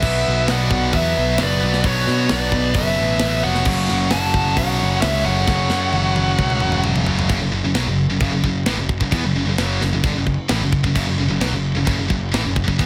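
A straight 4/4 pulse at 132 BPM drives this aggressive, relentless heavy metal fragment in F# minor, moving from Bm to F#m, with a tight, studio-room drum kit of bright cymbals, a medium-tuned snare and a tight kick (soft clipping on kick and snare) that plays a fill from 5.5 to 7.3 seconds, under a growly, up-front fuzz bass. A dark, high-gain lead guitar carries the melody through distortion and tape echo, and a nasal, parked-wah lead adds a warm, overdriven second line behind it; both stop at 6.8 seconds. Picked, distorted riffs come from a heavy high-gain guitar, a tight distorted guitar set in the background and a very quiet, double-tracked fuzz guitar, all under light reverb in a dense, heavily limited modern master.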